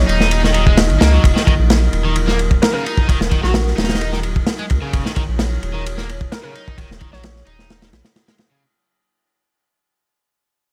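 Swaggering and raw, this breakbeat cut at 130 BPM in Eb minor sits entirely in a drop built on a single Ebm chord, with a fade-out beginning at 1.2 seconds and running to the end at 8.6 seconds. Up front, a crunchy breakbeat kit of tight kick, medium-tuned snare and dark ride cymbal sounds gritty and saturated in a small room, its top rolled off, alongside a thick, deep sub bass with a fast attack that holds long notes. An electric guitar, bright, overdriven and double-tracked, picks a riff through delay from 0.1 seconds. Behind them, a warbling, nostalgic tape-like pad holds detuned chords with a slow attack and long release, its chorus and reverb giving a mellow lo-fi haze while sidechain pumping makes it breathe. A hollow, bouncy square-wave pluck carries the melody in the background, its short filtered decay coloured by chorus, delay and a small-speaker tone, before it stops at 7.6 seconds.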